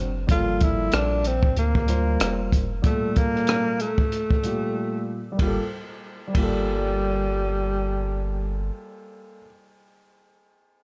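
A swung 94 BPM groove in 4/4 sets this smoky, nocturnal jazz-hop excerpt in G minor, opening on a Gm9 chord. A compact cocktail drum kit plays hi-hat, tight kick, ride cymbal and rim click with a small-room, rolled-off top from 0.3 to 6.5 seconds, with a break arriving from 4.8 to 5.4 seconds, while a deep, round dub sub bass with a fast attack sits up front beneath a dark grand piano whose intimate, vintage tone carries audible action noise. Over them a breathy tenor saxophone takes the jazz-style solo melody with vibrato and scooped notes, all set in light studio reverb and a warm production.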